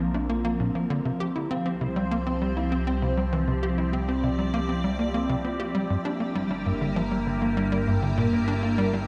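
A straight 4/4 pulse at 99 BPM runs through this mysterious, expansive ambient excerpt, where a punchy sequencer bass riff with analog chorus and tape echo drives beneath a bright, morphing wavetable pad that holds sustained chords up front through ensemble chorus, phaser and its own reverb, while a nasal analog drone with chorus hums low, a mellow soft-mallet vibraphone rings its metallic arpeggios in the background through tape echo, and a very quiet, breathy wind-like tuned noise texture drifts in at 0.1 s, all set in wet spring reverb over chords moving from Bbadd9 to Csus4 and then Gm at 5.9 s.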